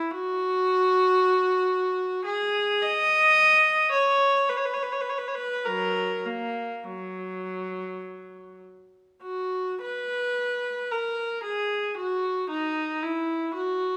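Flowing and serene, this short passage cut from a longer piece is a baroque-style suite movement for unaccompanied viola in 3/4, moving at a gentle 48-58 BPM with a supple, rubato feel. A single bowed viola carries the whole 14 seconds alone, ranging from F#3 up to D#5. Its gut-string tone is rich and reedy, shaded with light vibrato in a period style. The player sits up front in the mix, yet the sound keeps a slightly distant quality. A moderate recital hall reverb, with an RT60 of 1.4 s, gives the lines a soft halo of space.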